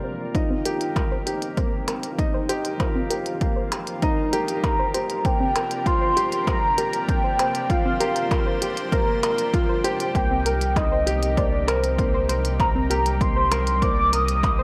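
Piano and strings electronica in C minor at 98 BPM, moving and intimate, built on a woody upright piano riff with audible action noise, a lush, airy detuned pad and a soft round pluck arpeggio that sits in the background with cassette-tape colour and tape echo, while a velvety, dark synth lead with chorus and tremolo carries the melody. A punchy, overdriven kick enters at 0.3 s and clicky hats with percussion blips follow, as filter sweeps on the pad, pluck and lead drive a build-up over Cm7 and Gm7/C. At 10.1 s the drop arrives with a deep, round sine sub bass joining the pumping pad and pluck, all set in a moderate lush hall reverb.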